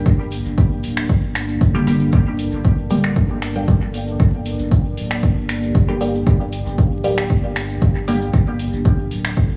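Cavernous and deep, this dub techno excerpt in G minor moves at 116 BPM in a straight 4/4, resting on a single Gm chord as an up-front punchy electronic kick drives and a soft, round sub bass pumps beneath a dark, slow-blooming chorused pad, while a muted, detuned chord stab with phaser and dub echo flickers until 8.4 seconds, an analog drum machine adds echoing finger snaps and hi-hat, and a grainy, vintage cabasa sits faintly in an echo-heavy mix laced with vinyl crackle and small room ambience.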